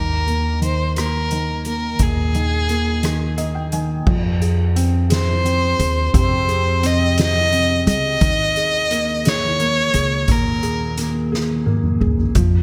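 In a bright, 1980s-style digital production with light reverb and a small-room ambience, this aching, melancholic six-eight pop ballad moves at 58 BPM in a straight 6/8 over Ebsus4, Fm and Eb7sus4. A rich, focused solo violin, bowed with vibrato and placed up front, carries the melody until 11.1 seconds. Beneath it, a mellow, intimate felt-muted upright piano with audible action noise adds a fill at 3.0 seconds, alongside woody pizzicato upright bass and a spacious soft-mallet drum kit with a fat snare and boomy kick, which plays its own fill at 11.3 seconds.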